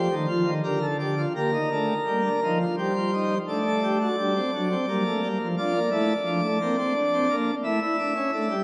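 Serious and solemn, this brief passage from a longer baroque-style fugue in triple metre is played by a solo pipe organ on a full plenum. The mixtures give the registration a brilliant edge, while the romantic voicing sits up front and spans from D3 to E5. The four contrapuntal voices move through a harmonic path that touches Gm, D/A, Dm and Bbadd9 before arriving at an A chord near 7.6 seconds. A cavernous church reverb with a 4.0-second decay surrounds the organ, and the production leans dark overall. The fragment breaks off at 8.6 seconds.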